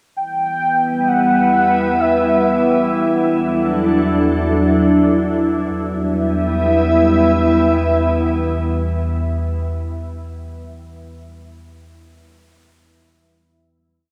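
A glassy, ethereal FM pad sits up front with slowly shifting chords under a velvety, vibrato-tinged synth lead tracing a motif, while a deep, ominous rumbling drone and a resonant background drone of moving overtones fill out this melancholic, reflective free-time ambient piece, all bathed in a cathedral-like reverb with a cassette-tape character before it settles on a final chord at 5.7 seconds.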